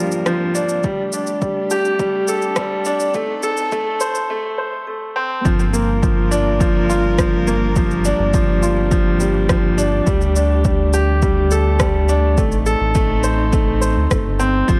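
A polished grand piano sits up front, playing a short-sustained riff with a touch of delay through this hypnotic, intimate piano and strings electronica in G minor at 104 BPM in a straight 4/4. Beneath it, a round, deep analog bass blends sawtooth, sine and triangle tones with a detuned, fast-attack character, pumping against the sidechain and shaped by a high-pass filter. A dark, woody string quartet holds bowed chamber chords with vibrato and a smooth top, low-passed and sidechain-pumped, while a filter sweep moves across it during the opening build-up. Overdriven electronic shaker and rim click start almost at once, and a punchy, layered electronic kick joins at 0.8 seconds, also overdriven. After a brief break at 4.3 seconds, the drop lands at 5.5 seconds and the Gm7, Dsus4 and Adim progression cycles again. An echo chamber reverb and a warm, dark production give this excerpt from a longer piece a close, enveloping sound.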